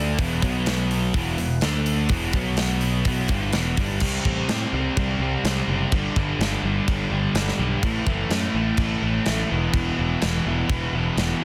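This energetic, powerful hard rock passage, cut from a longer piece, opens at once on two distorted guitars, overdriven bass and a very quiet tonewheel organ, with a tight metal drum kit landing at 0.2 seconds at a straight 126 BPM in 4/4. One guitar is bright, scooped and high-gain, the other sludgy and warm with overdrive, and both play a riff that circles around E5, B5 and D5 power chords before shifting at 4.0 seconds to a broader progression through C5, G5 and A5 and back to E5. Beneath them the picked bass sounds dark, round and punchy, while the organ holds piping, clean sustained chords through a slow rotary speaker, tucked far behind the band. The drums sit up front with bright cymbals, a medium-tuned snare and a tight, gritty kick given soft clipping, their acoustic sound carrying a big-room character. The mix is dry, dense and heavily limited in a modern way, giving the whole passage a crushing, compact weight.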